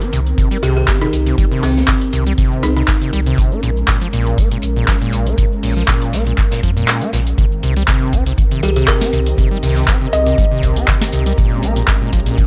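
A squelchy, distorted sawtooth acid bass drives this gritty acid house excerpt, its resonant riff carrying a filter sweep, tube saturation and tape echo over shifting Cm7 and Bbm7 chords. Underneath, a round sine sub bass pumps against an up-front, tape-warmed electronic kick, while a booming analog drum machine adds a crisp snare, handclaps, metallic hats and shaker, and a very quiet, dark jazz kit with a rolled-off top sits deep in the mix. A smooth, detuned sawtooth pad with chorus holds mellow sustained chords and breathes with sidechain pumping, and a woody, buzzing kalimba with tape echo plays two short melodic phrases. The kick drops out at 6.9 seconds and returns for the drop at 7.4 seconds. A blurred, evolving granular cloud pad drifts into the background at 9.2 seconds. The whole recording has a dry, gritty hardware character with cassette and transformer grit in a small room, and the swung feel keeps it driving.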